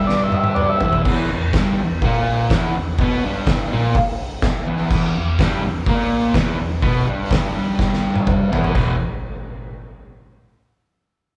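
Garage rock at 125 BPM in a raw, rowdy mood, cut from a longer piece, opens with a brief buzzy, overdriven combo organ solo with light vibrato until 1.0 s as the oversized low-tuned drum kit, with its fat snare, punchy kick and dark cymbals pumping in a bright stone room, fills from 0.1 s and again from 7.8 s, while a double-tracked, compressed fuzz guitar riff sits up front until 9.0 s, the whole band captured live in one room on cassette tape with a wet studio reverb.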